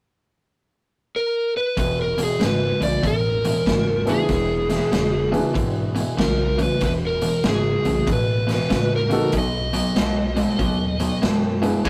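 A rough rehearsal-room recording with warm saturation and a short, wet booth ambience captures a rollicking, soulful electric blues shuffle at 95 BPM, cut from a longer piece: an overdriven slide guitar carries the melody from 1.2 s, then a picked, hollow-body guitar riff, woody pizzicato upright bass and a gritty, punchy garage drum kit in a pumping stone room enter at 1.8 s over E7, while a clear, worn, slightly detuned upright piano adds accompaniment from 4.1 s before the harmony moves to B.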